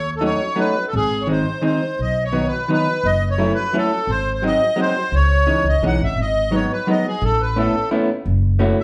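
A brisk pulse at 172 BPM in 3/4 drives this nostalgic, whirling musette excerpt, where a reedy, sweet accordion with light tremolo tuning carries the melody up front over a dark, clean, picked hollow-body electric jazz guitar entering at 0.2 seconds and a woody pizzicato upright bass with steel strings, the trio playing live together in one room with moderate large-studio reverb as chords such as D#m7b5, G#7 and C#madd9 pass by in a single section lasting 8.8 seconds.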